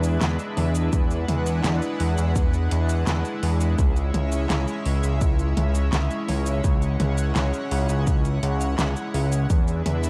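Synthwave at 84 BPM in C# phrygian, nocturnal and cinematic, with a dark, dry production that moves from E7 to C#m and back to E7. A fat, nasal, saturated analog bass sits up front beside a shimmering, chorused pulse-width pad with a slow attack and 12-bit sampler grit, both pumping with sidechain. A tape-toned pop kit with a fat snare, metallic hats, cabasa, handclaps and toms runs throughout, joined by a punchy electronic kick from 0.9 to 9.6 seconds in this short cut from a longer piece.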